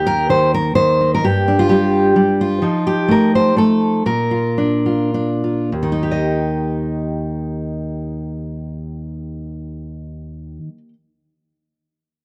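Nostalgic and hopeful, this short folk excerpt cut from a longer piece features a single fingerpicked steel-string acoustic guitar playing solo in Eb major and 3/4 time with a straight feel. The tempo moves between 97 and 130 BPM, and the playing slows down from 2.6 to 5.7 seconds before settling into the second section. The dreadnought guitar sounds warm, full-bodied and up front, ranging from Eb2 to Eb5 as it moves through G5, F7 and Bb chords before arriving on Eb at 5.7 seconds. The recording has a dry, close 1970s-style studio character with a touch of studio reverb, and the guitar plays throughout the 10.9 seconds.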